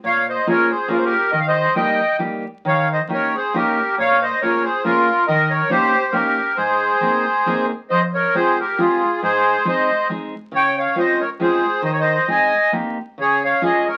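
Musette in a lilting 3/4, this short fragment of a longer piece feels whirling and nostalgic, with a gentle swing and a rubato give to the pulse. The accordion carries the melody up front, its reedy, sweet and airy voice colored by a light tremolo tuning. Beneath it, a fingerpicked steel-string dreadnought guitar supplies full-bodied accompaniment, also close in the mix, with the occasional finger squeak audible. The harmony drifts through minor sevenths, dominant chords and added-ninth colors before settling toward Db near 13.2 seconds. Moderate studio reverb surrounds the pair, and the sound of a very old 78 rpm record, complete with vinyl crackle, lends the whole fragment a faded, bygone patina.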